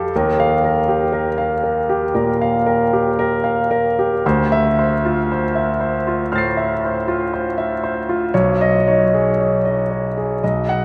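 A clear concert grand piano plays alone, spanning a range from B1 to C7, close and up front with audible action noise, deep bass and long sustain. This brief fragment of a longer impressionist classical piece moves at a slow, rubato pace of about 55-61 BPM in 4/4, with a hazy, serene mood. The harmony drifts through rich extended chords, starting on Ebadd9, shifting to Dm9 at 4.2 seconds and settling on B69 at 8.3 seconds. The polished, intimate piano tone sits inside a vast, echoing cathedral space whose long reverb tail blooms around each chord. Lasting just under 11 seconds, it feels like a suspended, dreamlike moment.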